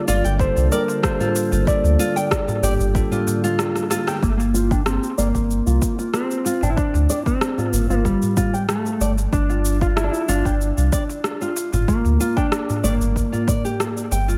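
A dark, clean lap steel guitar carries the slide melody from the first moment, trailing tape echo, while a bright, bell-like tine electric piano with analog delay and sidechain pumping, a very quiet detuned sawtooth pad with chorus, and a fingerpicked classical nylon-string guitar with audible finger squeak gather beneath it on a Gm7 chord. This is meditative, mystical organic downtempo in G minor at 94 BPM in a straight 4/4, cut from a longer piece. A deep, round sine sub bass sits up front with tube saturation and sidechain pumping. Layered, overdriven electronic drums, a deep kick and a shaker with rim click that also carries analog delay, sound as if re-recorded in a large room, while a clay-shell darbuka with natural skin stays close, dry and in the background. After a drum fill and a band accent around 4.2 seconds, the electric piano and pad drop out, and a filter sweep runs across the full-bodied, low-passed nylon guitar until 14.4 seconds. 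The whole mix is echo-heavy with light reverb.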